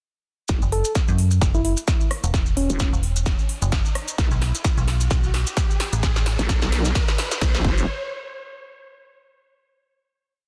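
Bass house at 130 BPM with a swung sixteenth feel, this aggressive, gritty piece is one long build from 0.5 seconds that breaks into a final hit at 7.9 seconds, moving from Esus2 to Asus2. An overdriven four-on-the-floor kick and a nasal, resonant vowel-sweep wobble bass with chorus and sidechain pumping sit up front beside a metallic FM bass with tube saturation. A layered dance kit adds a punchy snare, hats and rim clicks over grainy hand-played maracas sixteenths, while a round, keys-like synth lead with chorus, vibrato and delay plays short phrases early on, a riser enters at 1.8 seconds, and the dense, heavily limited master carries light reverb.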